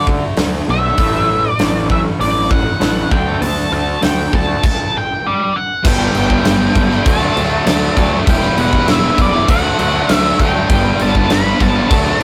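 Brooding and dark, this short cut from a longer alternative rock piece moves at a straight 99 BPM in 4/4, built on the quiet-loud style of the genre. An octave-fuzz lead guitar carries the melody high up with a shadowy, fuzzed-out edge, while a thick fuzz guitar drives a bright, picked riff beneath it and a growly, overdriven electric bass fills the low end. A huge arena drum kit enters at 0.1 seconds and sits up front, with a punchy kick, medium-tuned snare, shimmering crash and hi-hat ringing in a pumping hall-like room. At 5.8 seconds the harmony shifts from suspended chords and a power chord into a G, D and Em progression, and a sludgy, murky overdriven guitar joins the riff in the background. The whole has the rough feel of a rehearsal room, with saturated tone and a light reverb.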